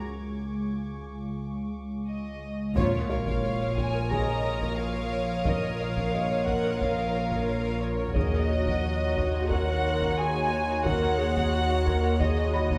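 Cinematic suspense film score at 89 BPM in Bb minor, mysterious and uneasy, where a warm chamber violin section carries the melody over an organ-like detuned drone, a pulsing tempo-synced gated texture, a high bowed violin texture and a soft, felt-muted upright piano with audible action noise. At 2.8 s the music breaks into its second section with a band accent and impact: a huge, dark sub drop, a background taiko ensemble on heavy sticks, and sul tasto cello and double bass sections join a second violin line, with the violas entering at 4.1 s. The close string sections sit in a wet recital hall reverb, and the harmony shifts from Bbm to Ebm7 at 8.2 s in this cut from a longer piece.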